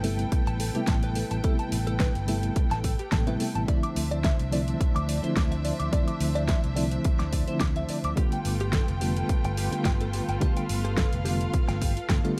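A digital ambience gives this sensual, sleek nu-disco passage, cut from a longer piece, a polished sheen over a light sixteenth-note swing. An up-front, punchy electronic kick enters at 0.3 s, layered with a pop drum kit whose fat snare and hi-hats are overdriven, both re-recorded in a small room. A round, amped fingered electric bass holds the low end, while a reedy, worn electric piano, slightly out of tune and heard through its built-in speakers, plays accompaniment with fast tremolo and sidechain pumping. A bright, clean electric guitar recorded direct picks a compressed riff through analog chorus and dub echo, and a lush, close bowed violin section sustains smooth, warm chords that also pump. The harmony moves from Am9 to Dm9 to G9.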